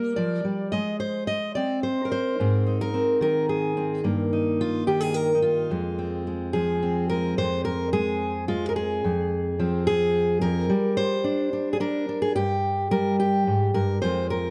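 A lone fingerpicked steel-string acoustic guitar opens this melancholic, haunting folk fragment, cut from a longer piece, moving at 108 BPM in a straight 3/4 in F dorian. The guitar sounds warm and up front, its fresh strings ringing with an auditorium-like body and the occasional finger squeak audible through the close, detailed microphones. Its part spans from F2 up to Eb5, drifting through Gm, Abadd9, Eb/G and Fm before arriving at a bare G5 in the latter part. A second section begins at 7.4 s, carrying the same solitary voice onward until the fragment stops at 14.5 s. Light reverb gives the single instrument a faint halo of space while keeping its detail clear.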